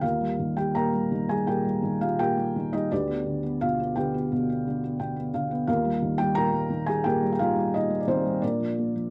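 A felt-muted upright piano opens the recording on an Ebadd9 chord, its tone soft and intimate, with thick felt and audible action noise close up front. This is a lyrical classical piece for solo piano in Eb major, relaxed and sunny in mood, moving at about 86 BPM in 4/4 with a rubato feel and uneven beats. The harmony passes through Ebadd9, G/D, back to Ebadd9, and settles on Bb. The piano ranges from D2 to Bb5, and a short fill runs from 4.7 to 5.7 seconds in the middle of the passage. The room is dry, keeping the mellow, dark character natural and close, and the piano plays to 9.1 seconds as a single section cut from a longer piece.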